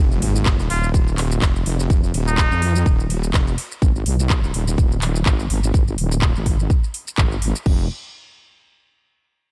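An electronic impact opens this aggressive, gritty bass house excerpt, very quiet beneath a heavy, saturated wobble bass that sits up front with chorus and sidechain pumping while a filter sweep runs across it until 7.7 seconds. At 125 BPM in 4/4 with a light swing on the sixteenths, the groove settles in F minor, moving from Fm to Ab at 3.8 seconds. A house kit of metallic hats, handclaps, shaker and crash comes in first, followed by a very faint, overdriven breakbeat-style layer of snare, hi-hat and ride that drops out by 3.7 seconds, and then a punchy, tape-touched electronic kick that drives from the front. A nasal, bright trumpet with straight mute plays a brief jazz-inflected solo line with vibrato and scooped notes, trailed by digital delay. The mix stays dry and close, with the drums carrying a small-room character.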